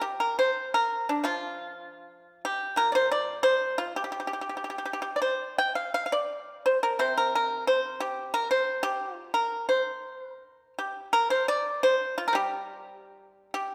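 A solo pipa opens at once, up front and played with fingerpicks, its dry, percussive tone ringing into moderate concert hall reverb in an elegant, pastoral piece of Chinese traditional music. The rubato phrasing in 2/4 moves at roughly 82-91 BPM in C shang mode, spanning Bb2 to G5. This short 13.7-second fragment, cut from a longer work, returns to its opening material at 11.1 seconds.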